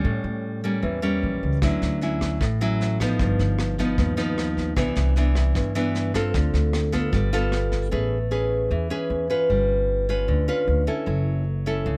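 Bossa nova at 153 BPM in a straight 4/4, sophisticated and sunny, cut from a longer piece and captured with close, detailed microphones and little reverb. Up front, a fingerpicked classical nylon-string guitar with audible finger squeak carries rich chords such as Dmaj9, Gaug7 and G7#11, while a pizzicato upright bass with a woody, thumpy tone, also up front, underpins it throughout. A muffled, lo-fi brush kit with a punchy kick, rim click and snare sits lower in the mix, playing only from 1.6 to 7.8 seconds, just before the music moves into a new section at 7.9 seconds.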